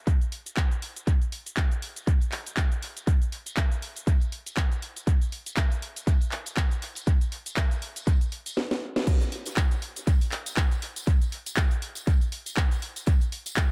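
A punchy, tape-warm electronic kick drum sits up front in this groovy, funky house excerpt at 120 BPM, with a 57% swing on the sixteenths, layered with a house drum kit whose cracking snare, handclaps, hi-hat, shaker and crash cymbal trail dub echo, the hats, percussion and cymbals pumping against the sidechain. A compressed, saturated tambourine with a tube-shaker and group-handclap character stays in the background behind a low-pass filter, and the mix is echo-heavy with light reverb and a digital ambience. A drum fill at 8.6 seconds and a band accent at 8.9 seconds lead into a drop at 9.1 seconds that runs to the end.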